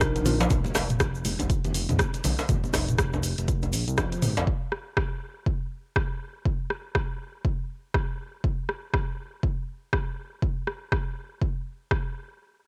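This excerpt of driving afro house at 121 BPM opens on an Ebmaj7(no3) chord. A woody, round synth pluck plays very quiet arpeggios, alongside bell-like electric piano stabs colored by sidechain pumping, cassette tape and tape echo, both heard only until 0.5 s. A smooth, gliding synth bass mixing sawtooth and square wave sits up front with portamento and sidechain pumping, carrying on to 4.5 s. Alongside it, a punchy, layered electronic kick and an afro-pop kit of metallic hi-hats, rim clicks and toms push the swung 16ths through the full 12 seconds. Hand percussion fills the opening stretch: a grainy egg shaker close and dry in the background, distant congas struck with hard hands in a large room, and a deep, compressed djembe played with soft hands. Light reverb and a home cassette recording give the track a warm, homespun cast.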